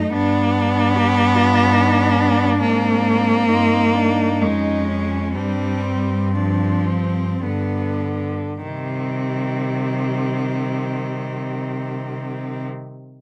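Close, detailed microphones and a dry room bring out every bow stroke in this elegiac, yearning fragment of a lyrical classical piece for cello ensemble, moving in a rubato three-time feel. A rich cello sings the melody smoothly and evenly with vibrato, while a warm second cello sits in the background with portamento, an expressive, up-front accompanying cello slides between notes, and a clear, steady cello holds the bass. The music slows from 1.3 to 8.6 seconds, settling onto a C minor chord at 8.6 seconds as a new section begins.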